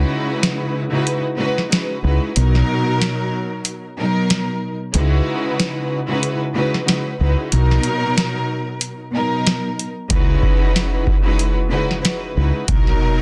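Boom-bap hip-hop in C# dorian at 93 BPM with a swung sixteenth feel, this moody, reflective excerpt pairs a lush, woody string section with vibrato and a cassette-tape tint against a dark, round fingered electric bass and a booming analog drum machine that enters at 0.4 seconds with a deep kick, tonal snare and metallic hats, all circling C#m11 and Bmaj7 in a dense, heavily limited mix with light reverb.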